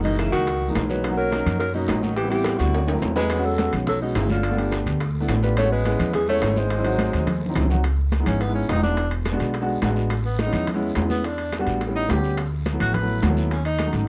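A dry, close 1970s-style studio sound with light reverb frames this sultry, sophisticated Afro-Cuban jazz at 212 BPM, where a dark, breathy alto saxophone carries the opening melody over a soft-attack tenor saxophone second line that takes a solo from 7.8 seconds, joined by an intimate concert grand piano with audible action noise, a growly pizzicato upright bass up front, background congas, ringing timbales and raspy guiro, very quiet tight bongos and woody claves, with drum fills at 2.5 and 7.0 seconds.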